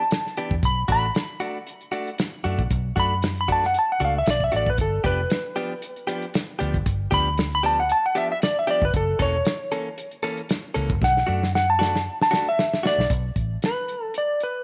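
Light reverb and studio ambience frame this smoky, mournful straight-eighth soul blues in B minor at 116 BPM, where an up-front, dark clean lap steel carries a slide melody over compressed, direct-recorded electric guitar stabs, a small-room soul drum kit with a punchy kick and rolled-off top that plays a fill from 11.0 to 13.1 seconds, and a round, foam-muted vintage fingered bass, with the chords moving from Em7 and Bm7 through G7 and F#7#9 before settling on a bare B7 chord at 13.1 seconds in this brief section cut from a longer piece.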